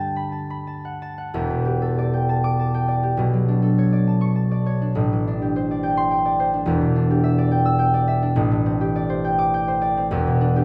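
In a gently rubato triple metre, this peaceful, graceful classical excerpt features a solo concert harp, fingerpicked and ringing up front across a deep-to-high range, its warm acoustic tone drifting through rich extended chords such as Gmaj9, Em11 and Am11 and blooming into the lush reverb of a recital hall.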